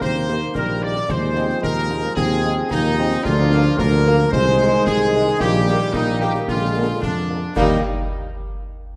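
Festive and rousing, this brief cut from a military-style march for wind band strides in 2/4 at 111 BPM in Eb major, with a bright, tight trumpet section carrying the melody over a warm woodwind section and background euphonium on second lines, a mellow French horn section entering at 0.3 seconds, a distant, roomy trombone section holding sustained chords, a punchy, up-front tuba anchoring the bass, and close, dry concert snare, bass drum and dark-toned clash cymbals tucked behind, all set in a wet scoring-stage reverb as the harmony moves from Eb through Bb7 and back to Eb at 7.6 seconds.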